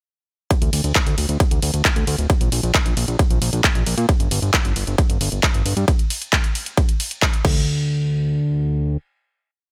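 A dry, up-front mix carries this brief, emotional and soaring piece of uplifting trance at 134 BPM in straight 4/4. It is built almost entirely around a drop that starts at 0.5 seconds. A punchy, overdriven electronic kick pounds out four-on-the-floor under a layered, programmed dance kit of claps, closed and open hi-hats, ride and crash, with its hats and cymbals pumping under sidechain. A fat, detuned sawtooth bass rolls in sixteenths with a saturated, filter-swept edge, pumping in the same way, and carries on alone once the drums stop at 7.5 seconds, ringing into the final hit.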